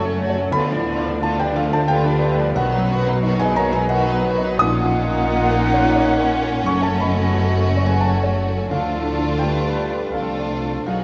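A wet scoring-stage reverb with a 1.9-second decay surrounds this moving, bittersweet cinematic fragment, which drifts in a rubato 3/4 at 80-89 BPM over chords such as Gbm, Dm, B and Bbm. A smooth violin section carries the melody with light vibrato, while an expressive, pure-toned flute section and a focused second violin section add supporting lines alongside a soft, felt-muted upright piano with a thin, vintage tone. Lush violas sit distant in the background beside mellow French horns holding sustained chords, and close cellos join an even double bass section to anchor the bass.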